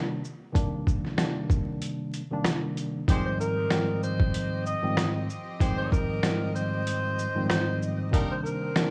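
Dark and moody, this boom-bap hip-hop fragment in F minor moves at 95 BPM with a light swing, opening on a worn, slightly out-of-tune tine electric piano with cassette-tape color over a gritty, pitched-down sampler-style drum kit that enters at 0.2 seconds with a thumpy kick, snare, rim click, hi-hat and shaker, before a nasal, gut-string studio string section and tight, clear horn stabs with analog delay arrive at 3.1 seconds and a breathy, subtone tenor saxophone with scooped notes and its own analog delay takes the melody at 3.3 seconds, all wrapped in vinyl crackle and small-room ambience.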